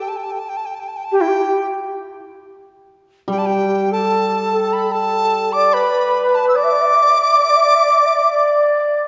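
A large dizi opens this graceful, pastoral excerpt of Chinese traditional chamber music with a pure, buzzing-membrane melody, joined at 1.1 seconds by an airy, end-blown xiao second line, both bamboo voices up front with vibrato and crisp attacks, while a hammered dulcimer adds quiet, shimmering, ringing accompaniment from 3.3 to 5.7 seconds, all at a free rubato around 73 BPM in the D zhi mode and heard from further back in a wet concert hall.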